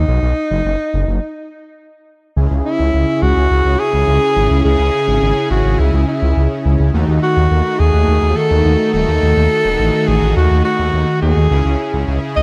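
Synthwave at 105 BPM in 4/4 with a straight feel, this moody, nostalgic passage in C# minor is cut from a longer piece. A mellow alto saxophone carries the melody up front from the start, playing in a classical solo style with vibrato and a tape echo trailing its lines. Beneath it, a thick, detuned saw bass with chorus sits prominently in the mix, its unison sawtooth layers giving a lush, sustained low end. A soft supersaw enters at 2.4 seconds with smooth, full-bodied sustained chords, its detuned unison tone shaped by a moving notch. A break at 1.2 seconds leads into this fuller second section, where the harmony moves from C#m to D#dim and back to C#m. A light, small-room reverb keeps the sound intimate.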